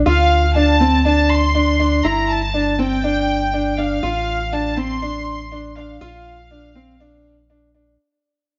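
A straight 4/4 pulse at 121 BPM drives this short, hopeful cut from a longer piano and strings electronica piece, heard as a drop with a fade-out running from 0.1 s to 8.0 s. A round, deep analog bass with a dark sawtooth and sine blend, a fast attack and a sustained tone holds the low end from G1 to D2 across the full 8.0 seconds. Up front, a boxy baby grand piano plays a riff between C4 and F4, while a studio violin section carries the luminous melody from F5 to C6 in a bowed, reedy, gut-string period style with light vibrato and a smooth top. The harmony moves through Dm, Gsus2, F6/A and Bb, changing every two seconds. Light reverb and a small room ambience give the mix a warm, close sound with a soft, rolled-off top.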